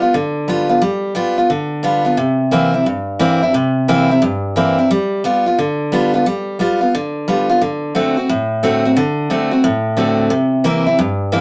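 A bright, full-bodied picked steel-string acoustic guitar sits up front in moderate studio reverb, playing alone through a rollicking, upbeat rock passage at 177 BPM in 4/4 with a swung eighth-note feel, moving through G7, C7, G7, D7 and back to C7 in G mixolydian, tuned to A4 = 441 Hz, over 11.4 seconds cut from a longer piece.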